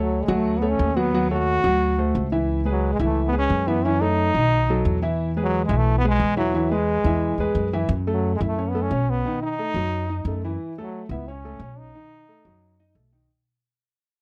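Dry and close, with a 1970s studio feel, this lively, sunny Afro-Cuban jazz cut moves at a brisk 177 BPM in a straight 4/4 and is taken from a longer piece. A bright trombone carries the melody up front as a jazz-style solo, its soft attack and vibrato giving the line a present, singing quality. Beneath it, a concert grand piano supplies intimate, natural-sounding accompaniment with deep bass, long sustain and audible action noise. The pizzicato upright bass sits just as close, woody and thumpy with steel strings. The harmony opens on Dmaj7 and moves through chords such as C#m7, B7 and Eadd9. From 7.9 seconds it shifts to F#m7 and F#m6 before settling on B9sus4 and B7, as the music fades out from that point through to 13.3 seconds.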